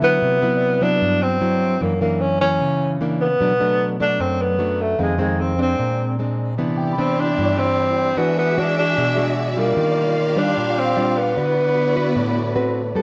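A breathy tenor saxophone carries a relaxed, sophisticated bossa nova melody from the first moment, its subtone, scooped notes and vibrato sounding intimate yet distant, over a dark, fingerpicked nylon-string guitar that sits up front throughout this excerpt. A very quiet, mellow tine electric piano comes and goes in short spells, while a lush string section, bowed with vibrato and portamento, returns at 6.6 s to hold sustained chords behind the saxophone until the horn closes at 12.6 s. A moderate echo-chamber reverb gives the whole performance a roomy glow, and jazz chords such as Cmaj9#11, Bm7 and D13 lend it polish.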